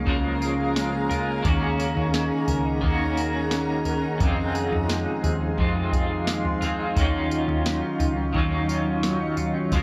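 Haunting and ethereal, this short dream pop fragment drifts at an unhurried, straight 4/4 pulse through a progression of Db6, Ab9sus4, Fm7 and Ebm9. A clean, twangy electric guitar plays arpeggios bathed in lush chorus and tape echo, while a second, brighter guitar at the edge of break-up adds compressed, picked accompaniment colored by tremolo and chorus. Behind them, a granular cloud pad holds blurred, detuned sustained chords with slow attacks, long releases and its own built-in reverb. Underneath, a foam-muted vintage bass gives round, dark low notes, and a soft analog rhythm box enters at 0.1 seconds with a deep kick, crisp snare, tambourine and toms. The whole mix carries light reverb and digital ambience, with the worn, warbling pitch drift of old cassette tape lending it a faded, dreamlike haze.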